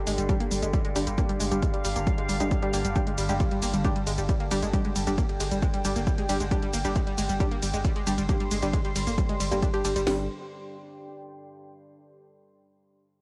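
Driving peak-time techno at 135 BPM in a straight 4/4, this short cut from a longer piece carries an industrial edge and a G5 chord underpinning the drop that runs from 0.0 to 10.1 seconds. A layered techno drum kit sits up front with a punchy kick, cracking snare and smooth hats, re-recorded in a small room, while a dry analog drum machine adds hi-hat, ride cymbal and shaker that pump against the sidechain. A deep, thick sine sub bass holds a saturated G1 under a low-pass filter, and a bright, detuned analog pluck riff with ring modulation, a filter sweep and tape echo pumps alongside muted, mellow dub chord stabs trailed by analog delay. Behind them, a wave-folded, resonant drone with moving overtones and phaser sits in the background until 10.1 seconds, and a moody, evolving pad of unison saw and sub-octave sine, washed in chorus and built-in reverb, lingers alone until 11.8 seconds. 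The whole mix carries the grainy colour of a home cassette recording with light digital ambience.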